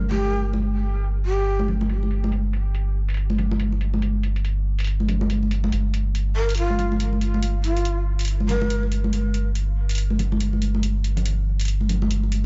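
Deep dubstep with a meditative, dark mood and a half-time, swung feel, cut from a longer piece. A soft, round sub bass sits up front through the whole passage, its deep triangle-and-square tone lightly tube-saturated. A breathy bamboo shakuhachi appears in two short phrases, the second starting at 6.4 s, its chiff, vibrato and unsteady, tongued notes trailing into dub echo. High-tuned congas with a thin-skinned, bright sound ring from a distant large room, also fed through dub echo. Metallic electronic hi-hats, layered, overdriven and low-pass filtered, run quietly beneath, while a filter sweep moves across the drums and a digital ambience keeps the top end dark.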